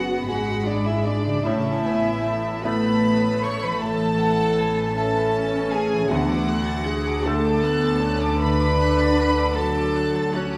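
Moving and longing, this slow, rubato cinematic film-score excerpt in 6/8 at 52 BPM features a dark, woody solo cello carrying the melody with vibrato and portamento, joined by a soft-attack violin section high above and a clear studio violin section on a second line, while a bright, worn concert grand piano, a lush viola section, a ringing fingerpicked harp playing arpeggios, and floating cello and double bass sections fill out the harmony over F#sus2, Asus2 and D chords in a reverberant hall.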